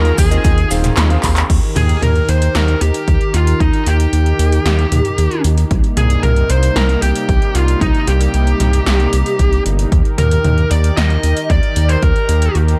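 A dark, lightly reverberant production carries this nostalgic, romantic synthwave excerpt in Eb major at 114 BPM, where a fuzzy lead guitar sings the melody through tape echo over a detuned, chorused pad pulsing with sidechain pumping, a round, up-front analog bass, a punchy electronic kick and 80s electronic drums with gated snare, toms and metallic hats, while a clangy electric grand piano adds echoing stabs only from 0.3 to 1.5 seconds before a drum fill at 1.2 seconds leads into the longer second section.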